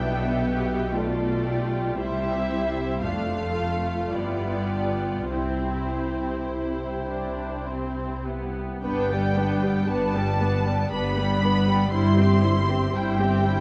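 Muted violas sit up front in this slow, romantic movement for string orchestra, their rich, veiled tone, soft attack and vibrato carrying the accompaniment in triple metre with free rubato. Above them, the muted violins sing the melody high in their range with a dark, lush sound, while a second violin line moves beneath it. Cellos with light vibrato and a smooth top, and double basses with a full, lush depth, anchor the bass, and all five sections play together through the whole 13.6-second passage, cut from a longer piece. The harmony turns at 8.8 s, opening a second section. A wet concert hall reverb and a shadowy, warm production wrap the ensemble in a serene glow.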